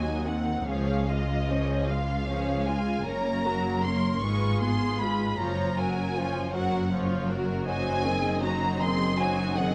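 Classical music for string orchestra, this serene passage from a longer slow romantic movement sways gently in a rubato 6/8, with a lush, up-front violin section singing the expressive, soft-edged melody over a second violin line, focused violas and bright cellos, all richly vibrato-laden, while the smooth-topped double basses anchor the bass in a dark, warm mix bathed in a recital hall's resonance.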